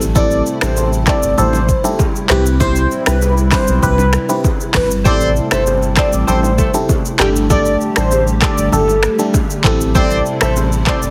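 Afrobeats at 98 BPM in A minor, this hypnotic, smooth excerpt from a longer piece rides a straight 4/4 groove through a progression of Am7, Cmaj7, Am7 and Gsus2. Up front, an electronic afro-pop kit with a deep kick and dark hats mixes finger snaps, handclaps, rim click and shaker, while a round sine sub bass anchors the low end. A biting FM electric piano with a noise layer and phaser supplies percussive accompaniment, and a hollow, flute-like pad with a warbling ensemble chorus holds mellow chords in the background. From 0.2 s a velvety sawtooth synth lead carries the melody with vibrato, chorus and tape echo, joined by bright, distant congas and bongos in a large room. A punchy pop-style horn section adds a second line from 5.0 s, and the whole mix has a heavily compressed, radio-ready sound with light digital reverb.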